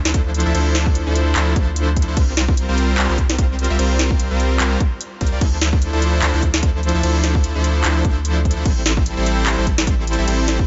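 A fat, bright polysynth built from detuned sawtooths carries the riff up front through this lush, emotional future bass passage in D minor at 148 BPM. It pumps against the sidechain and trails a delay over Dm9, C7sus4 and Am7 chords, with a half-time feel and a light swing on the 16ths. Beneath it, a deep, saturated sub bass with a triangle tone also pumps, while a hard-clipped electronic kick sits up front beside a trap kit of sharp snare, crisp hats, handclaps and crash cymbal, both drum parts touched with studio reverb.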